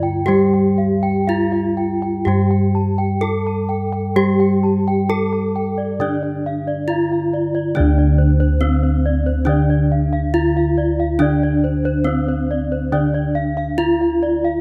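A bright, horn-mallet bronze metallophone carries the melody up front, its paired tuning throwing off shimmering beats, over a lower metallophone accompaniment, a quieter wooden-mallet metallophone spinning arpeggios high above, and dark, round bossed gongs holding the bass in this ceremonial Javanese gamelan passage cut from a longer piece, captured with close, detailed microphones and light reverb.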